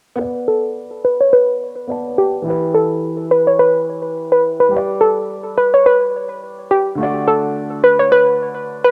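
A clear baby grand piano opens at 0.2 seconds, playing an open, long-sustaining accompaniment through a low-pass filter in a tough, hypnotic dancehall groove at 106 BPM in 4/4, with a 56% swing on the sixteenths. Moments later a hollow, bouncy square-wave pluck takes the melody up front, its detuned, bright tone thickened by chorus and trailed by an analog delay, while a filter sweep runs across the whole passage. The harmony moves through B minor, E minor, G and D, with the tuning set slightly flat at A4 = 437 Hz. A moderate spring reverb and small-room ambience surround the parts, and the cassette home recording gives the sound a homespun character. Both parts play on until 8.9 seconds, as this short cut from a longer piece stays in a single section.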